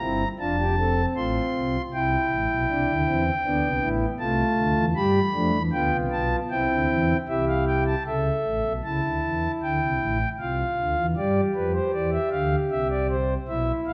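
Classical baroque-style fugue in four parts, played by a solo pipe organ on a principal stop. The mood is contemplative yet driving, moving at a moderate pace in a straight four-beat metre. The organ sits up front with a smooth, warm tone and a romantic voicing, spanning from F1 up to C6. A recital hall's lush reverb, with a 1.6-second decay, surrounds the sound. The harmony first moves through F, C, Dm7 and G7 back to C. A second passage beginning at 8.1 seconds then turns through A, Dm and a G7 with its third omitted before resolving to C at 12.7 seconds. This cut from a longer piece ends at 13.9 seconds.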